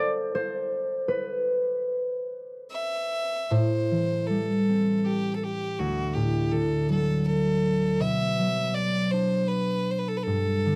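This dry, close recording has the intimate feel of a 1970s studio, with little reverb around the instruments. It is a fragment of a haunting, mournful Celtic slow air in A dorian, tuned to A4 = 443 Hz, moving in a rubato 3/4 at around 79 BPM. A bright, ringing concert harp, thumb-plucked and placed up front, opens the piece alone, spanning from its low register up to C5. At 2.7 seconds a single fiddle enters with the melody, its clear, intense tone carried by an airy bow and light vibrato, heard close and up front. From 3.5 seconds the harmony settles in, moving through Am7, D and Bm beneath the fiddle's line as both instruments carry on to the close of the fragment.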